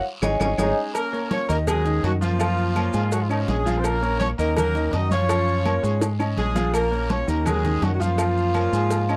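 A brief ringing, hard-mallet vibraphone phrase and a band accent with a drum fill open this fiery, danceable salsa excerpt, as a bright trombone section slips in behind before an up-front horn section in octaves takes the melody from 0.6 seconds over a dark, round fingered electric bass, clear baby grand piano chords cycling through Bb minor, Eb minor seventh and Gb major seventh, and a background bed of congas, cowbell and bongos, timbales and agogo bells, woody claves, raspy guiro and grainy maracas, all captured in a dry, close 1970s-style studio sound with another drum fill at 6.0 seconds.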